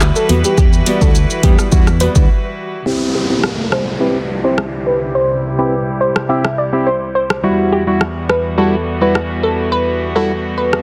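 Bouncy and hypnotic, this dancehall excerpt at 105 BPM rides an up-front afro-pop drum kit with a deep kick, metallic hats, handclaps, rim click, shaker and a soft-clipped snare, under hollow, percussive organ stabs, a glassy wavetable pluck melody with chorus and tape echo, sustained bowed strings with gut-string tone and pumping, a round, dark fretless bass and fingerpicked nylon-string guitar arpeggios that both drop out by the break at 2.3 seconds, before a downlifter and riser and a filter sweep carry the section from 2.9 seconds as the harmony moves from Emadd9 to C and back.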